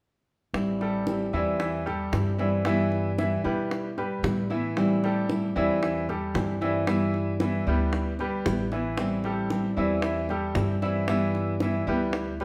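A relaxed, danceable Cuban son and guajira groove at 114 BPM opens at 0.5 seconds with a dark, fingerpicked nylon-string guitar up front with finger squeak, a woody, thumpy pizzicato upright bass on gut strings and round, low-tuned bongos close and dry, joined at 0.8 seconds by brilliant, long-sustaining piano arpeggios, all swaying between Am7 and G6 in a moderately reverberant large studio room with the band playing live together.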